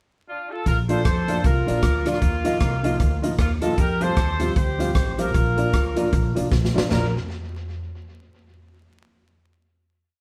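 Upbeat and joyful, this short ska piece in Bb major moves at 154 BPM in 4/4 with a swung eighth-note feel. A tight, clear horn section opens the pickup bar at 0.3 seconds, playing hook phrases with light vibrato and a vintage pop flavour, partly doubled in thirds. The band then enters: pizzicato upright bass walks underneath with a woody tone, and an airy, polished big-band drum kit sits up front with a punchy kick and a side-stick backbeat. A clean electric guitar chops on the off-beats in the background, while a dark upright piano with long sustain adds its own off-beat stabs. The harmony moves from a D minor pickup through Bb, Ebsus2 and Fsus2 back to Bb, and a drum fill at 6.5 seconds leads into a closing chord. The band plays live in one room with moderate reverb and a layer of vinyl crackle.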